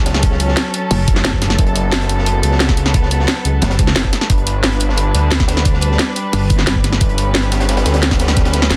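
A dark studio string section and a thick, detuned saw bass open this futuristic, dark excerpt of technical drum and bass at 177 BPM in F# phrygian, the bowed strings holding sustained chords with light vibrato and a reedy, gut-string tone from a distant place in the mix while the sawtooth bass sits up front with chorus and tube saturation. Both pump against the sidechain as the harmony moves from F#m to G at 4.3 seconds. An electronic kick with a knocking, tape-touched punch anchors the drums alongside an up-front drum and bass kit with a cracking snare and bright hats. Behind them, a crunchy breakbeat kit adds a gritty, high-tuned snare and saturated hats with a rolled-off top, all high-pass filtered in the background. A heavy, pulsing pluck wobble bass with chorus cuts in briefly at 0.9 seconds and again at 3.6 seconds, then returns from 6.3 seconds to the end, mellow yet compressed and up front. 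The small room ambience and dense, heavily limited modern master keep the whole straight 4/4 groove tight and loud.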